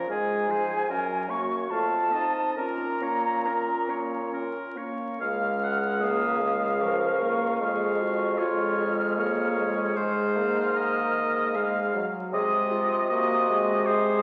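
Oboe, clarinet, French horn and bassoon open this elegiac, solemn slow movement for wind quintet in triple metre with free rubato, and a moment later a pure concert flute with vibrato takes the melody high above, its attack crisp and its highs rolled off. The close-miked oboe sings a clear second line with light vibrato, the clarinet sits mellow in the background, the horn sounds distant and roomy, and the bassoon gives a warm, punchy bass. The harmony moves into a new section at 5.2 s, all of it heard through wet scoring-stage reverb and the crackle of a very old 78 rpm record, a fragment cut from a longer piece.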